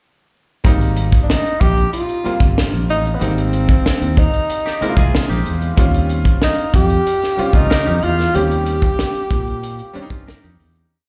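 Heard as a live club gig through the venue's sound system, this complete piece of lush 1970s-style soul is bathed in roomy reverb and carries a smooth, romantic mood. A tight funk drum kit with a high-tuned snare and firm kick sits up front, setting a mid-tempo groove alongside a growly, punchy fingered electric bass whose melodic line uses muted ghost notes and chromatic approach notes. A brilliant grand piano with a slightly worn character adds pushed, rootless chords and grace notes, touched by slapback echo as the harmony moves from Abmaj9 to Eb13. From 1.2 seconds a breathy, close-miked tenor saxophone takes the lead with jazz-style vibrato and its own slapback echo, building its melody from call-like motifs. A clean, twangy electric guitar, also echoed, joins at 4.7 seconds with short fills in thirds between phrases, and the piece fades out from 8.3 seconds.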